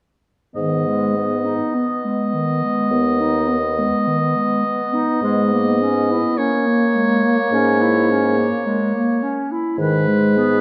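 Classical slow romantic movement for wind quintet in G# minor at 52 BPM, solemn and melancholic in a rubato 4/4 and cut from a longer piece, where an up-front, warm oboe carries the second line over a distant, roomy clarinet in the accompaniment, alongside a smooth-topped French horn and a mellow bassoon on the bass, both with vibrato, all four sounding from 0.6 to 10.6 seconds in a moderate concert-hall reverb as the harmony moves from G#m to A#m7b5/G# and back.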